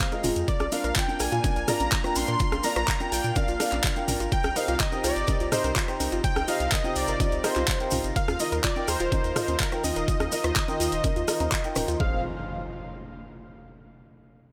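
A straight groove drives this dreamy, bittersweet progressive house drop, with a knocking, overdriven electronic kick up front, an overdriven pop kit of handclaps, warm hats and rim clicks, a dry analog drum machine adding congas, toms and rim clicks in the background, and grainy, distant maracas. A round, deep analog bass and a lush, warbling pad pump with the sidechain beneath a felt-muted upright piano whose mellow stabs carry audible action noise and tape echo, while a soft pluck trails chorused, echoing arpeggios and a very quiet glassy texture of drifting overtones hovers from 0.2 seconds. On top, a thick, bold detuned unison lead sings a bright, vibrato-laden melody through tape echo over chords moving from Bb through Cm and Ebsus2 to Fm, and an electronic impact lands at 12.1 seconds as the excerpt shifts into a new section.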